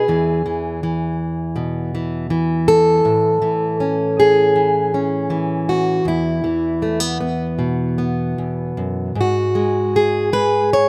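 A fingerpicked, plugged-in steel-string acoustic guitar carries this short folk fragment alone, its bright, up-front tone touched by a slapback echo. The mood is pastoral and nostalgic, moving at about 80 BPM in 4/4 with a loose, rubato feel in E major. The guitar spans from E2 up to C#5, settling on E before moving to A at 3.0 seconds and returning to E5 at 6.0 seconds. At 9.2 seconds a new passage opens on G#m7, carrying on until the cut ends at 10.9 seconds. The sound is dry and close, recorded outdoors with little reverb, so the guitar's concert-quality voice comes through plainly.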